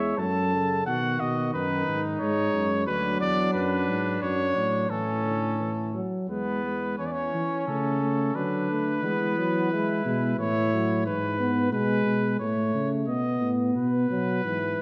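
Heard through a wet recital-hall reverb, this serious, contemplative excerpt of a classical imitative canzona for brass ensemble moves at 88 BPM in 3/4 in A major, with an up-front trumpet carrying the melody with light vibrato and a smooth top, a mellow, distant flugelhorn shaping the second line until 11.0 s, a dark euphonium filling out the accompaniment, and a roomy tuba anchoring the bass.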